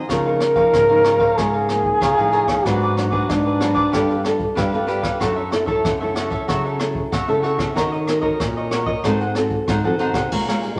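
Yearning yet lively, this samba and choro excerpt moves at 94 BPM in a straight 4/4, with an up-front, vibrato-laden jazz trombone soloing over a crisp, bright cavaquinho, a fingerpicked nylon-string guitar with audible finger squeak, a thumb-plucked classical nylon-string guitar carrying the bass, and a brushed drum kit with dark cymbals, boomy kick, hi-hat and rim click, all set in a wet large-studio reverb as the chords pass from Db69 through Abm7b5, G9 and Gbm7 to Ebm7 and Ab7b9, the trombone falling silent at 4.6 seconds before returning briefly at 10.6 seconds.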